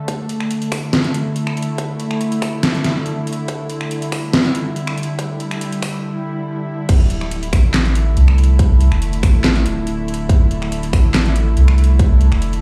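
A half-time 4/4 pulse at 141 BPM drives this brooding, meditative deep dubstep fragment, cut from a longer piece and built on a D5 chord throughout. A punchy, overdriven electronic kick anchors the groove, while an up-front dubstep kit adds a deep snare, metallic hi-hats, handclaps, finger snaps and crash cymbal, both parts re-recorded in a small room for a gritty edge. From the very start, a tense, nasal, string-like drone holds sustained chords with slow attack, vibrato and its own built-in reverb, while a filter sweep works across it through the opening build-up from 0.1 seconds. At the drop at 6.9 seconds, a round, soft sub bass enters up front with sustained, fast-attack notes deep in the low register. The whole mix sits in a stone-like space, as if played on a big sound system in a bare room, with a moderate reverb tail.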